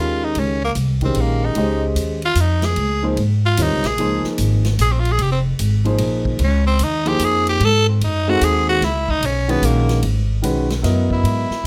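This excerpt of modal jazz opens with a growling tenor saxophone taking a solo from the very start, its raspy, gritty tone pushed up front with vibrato, over a grand piano and pizzicato upright bass. The tune moves at 149 BPM in a swung 3/4, sitting in Bb dorian with a searching, spiritual mood. The piano accompaniment sounds intimate, with its action noise audible, while the woody bass on steel strings stands forward in the mix. A swinging big-band drum kit joins at 0.3 seconds on hi-hat, kick, ride and snare, its punchy kick and medium-tuned snare carrying the natural sound of a big room, though it sits well back. The harmony rests on Bbm11 before shifting to Ab7b9 at 7.6 seconds and C#m11 at 8.8 seconds as the section repeats, all within a light reverb.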